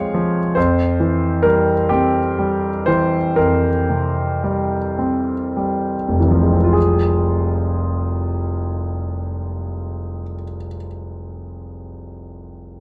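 A romantic classical nocturne for solo piano in F minor, this wistful, melancholic fragment from a longer piece moves in a slow, rubato 12/8 at roughly 31 to 47 BPM, easing and slowing through its first 6.8 seconds before settling into a new section. The bright concert grand sits up front and intimate, its brilliant tone, deep bass and long sustain framed by audible action noise, while harmonies shift between F minor and C7 over F before returning home. Light reverb and a dark, warm production give the short recording a melancholy glow.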